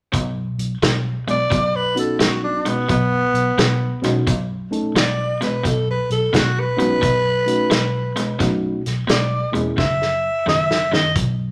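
Recorded in a large studio with a moderate reverb, this soulful, laid-back electric blues shuffle excerpt swings easily at 87 BPM in B mixolydian, its punchy, up-front country drum kit driving things from the start while a crunchy overdriven guitar picks a bright riff over a round, foam-muted bass sitting in the background. A raspy, growling tenor saxophone takes the solo from 1.3 seconds, up front with light vibrato and scooped jazz-style notes, and a reedy, clean electric piano adds accompaniment from 1.9 seconds. The harmony moves from B to F#5 at 9.8 seconds, where a drum fill carries the section to its close.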